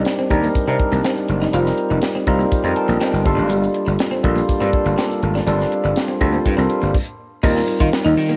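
Polished 1980s jazz-funk pop with a bittersweet, nocturnal mood, this short excerpt cut from a longer piece sets a barky, lightly overdriven tine electric piano and a growly, punchy slap bass up front over a tight, dry funk kit with bright cymbals and a high-tuned snare, while a clean semi-hollow guitar riff with lush chorus sits in the background beside a grainy tube shaker, the piano slipping in a fill at 2.5 seconds before a stop at 6.9 seconds, all carrying the character of a home cassette recording in a small room.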